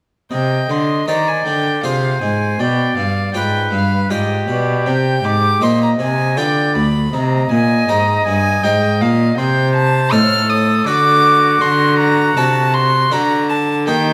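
A baroque-style classical sonata movement with continuo in C minor, this excerpt moves at a grave, solemn 80 BPM in a straight 3/4. The violin carries the melody, ranging between D5 and F6, with an airy bow and a nasal, gut-string period tone, sitting close and up front as a single bowed player. A clear oboe adds a second line with light vibrato, set distant and roomy in the hall. Beneath them, a brilliant Flemish-style harpsichord with octave strings supplies plucked accompaniment, while a rich, reedy cello holds the bass between D2 and Eb3. All four parts play together from 0.3 to 14.1 s in a moderate recital hall reverb, as the harmony passes from C minor through F minor and G7 and moves on to D and then D7.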